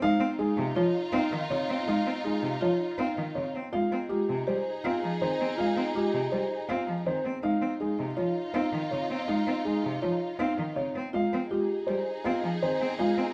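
Minimalist classical pattern music, bright and hypnotic at 162 BPM in a straight 5/4, with a dark, intimate concert grand piano carrying the melody over a bowed solo cello's expressive vibrato and portamento, woody soft-mallet marimba arpeggios, and lush sustained chords from a violin section with a smooth top, all cycling between Dbadd9 and Fm7 in a moderate large-studio reverb.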